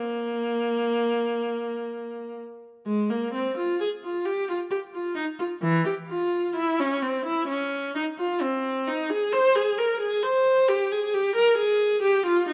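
Introspective and solemn, this short fragment of a baroque-style suite movement for unaccompanied viola unfolds in F minor at around 65 BPM in 3/4, its beats uneven and shaped with free rubato. A single bowed viola carries everything from 0.0 to 12.5 seconds, ranging from E3 up to C5. Its tone is rich and focused, coloured by vibrato, and it sits up front in the sound. A moderate recital hall reverb with a 1.4-second decay surrounds the instrument, lending the unhurried phrases a sense of space. The movement's opening idea is stated briefly and then begun again at 2.9 seconds before the passage is cut off from the longer piece.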